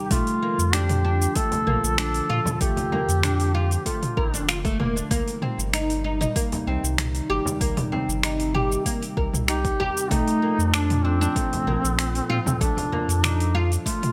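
Organic downtempo at 96 BPM in 4/4, hypnotic and earthy, cut from a longer piece and moving from Bbmaj7 to Cm7 and back. A woody, double-strung oud plays up-front arpeggios with delay over a warbling, lo-fi pad with chorus and sidechain pumping and a round sine sub bass that also pumps, while a distant, roomy duduk with vibrato and scooped notes sings the melody through digital delay, dropping out at 4.4 seconds and returning at 9.5 seconds. Overdriven deep house drums with metallic hats, snaps, shaker and toms sit up front with a deep electronic kick, and a soft-handed frame drum murmurs in the background of a lightly reverberant room.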